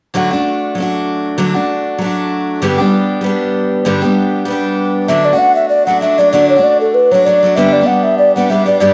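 A picked steel-string acoustic guitar opens this rollicking Celtic folk cut, its fresh strings ringing up front as it swings between D and G chords. At 5.1 seconds a breathy alto ocarina takes the melody, its clay tone tongued and shaded with vibrato, carried over the guitar through to the end at 8.9 seconds. Both parts have the soft haze of cassette tape, and a wet spring reverb and small room ambience give this short fragment of a longer piece the cosy feel of a home recording.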